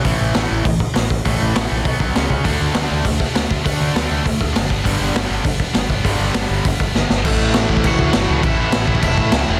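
Two bright picked guitars, one overdriven and one distorted, open on a riff in the background alongside an up-front, gritty garage drum kit with a boomy kick and a growling overdriven bass in this rowdy, rebellious punk rock passage, with a double-tracked high-gain guitar joining at 2.4 s and, after a drum fill at 6.9 s, a twangy, slightly broken-up lead guitar carrying the melody from 7.3 s, all in a dry, dense, heavily limited mix.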